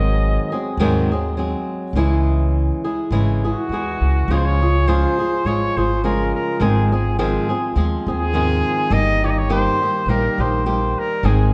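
A moderate recital-hall reverb surrounds this romantic, festive mariachi excerpt in a swung 4/4, with an acoustic, fingerpicked flamenco guitar and a woody, thumpy pizzicato upright bass up front throughout. A mellow, classical-style trumpet with light vibrato plays a brief second line in the opening moments. At 3.5 s a punchy, roomy solo trumpet takes the melody, sounding distant yet up front, just before a new section begins at 4.3 s.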